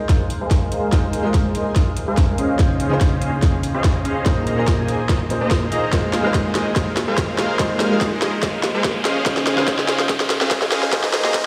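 Future bass at 144 BPM in Ab major, this playful, lush build-up is cut from a longer piece and moves in a half-time feel with a light swing on the sixteenths. Huge, detuned supersaw chords sit up front carrying the riff, colored by cassette tape grit, sidechain pumping, tape echo and a filter sweep that runs the whole way through. A bright grand piano with a worn, brilliant edge and short sustain adds accompaniment, also pumping and echoing, while a very quiet shimmering pad holds ethereal, granular chords beneath from 0.3 s. A hard-clipped electronic kick and a trap kit of sharp snare, metallic hi-hats and woodblock drive an extended drum fill, and a faint riser joins at 3.7 s. The harmony cycles through Ab6/9, Dbmaj9 and Bb9sus4, and the whole mix carries a large, roomy reverb as if played on a big sound system in a bare room.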